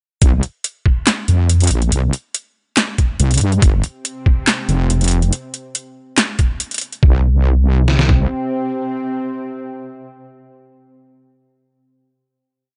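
A heavy, sawtooth-edged wobble bass dominates this short, dark deep dubstep piece, holding long, saturated low notes with a chorus effect from 0.2 to 8.3 seconds at 141 BPM in a half-time feel. Two drum kits sit up front beneath it. A gritty, pitched-down sampler-style kit supplies a thumpy kick and medium-tuned snare with a tape-like character. An overdriven electronic kit layers a punchy snare, handclaps and metallic closed hi-hats until 7.0 seconds. The drop moves from C5 to F5 harmony. A tense, string-like drone with vibrato and built-in reverb enters at 4.1 seconds and sustains through the final note, ringing out with a long release, quiet in the background of the digital ambience.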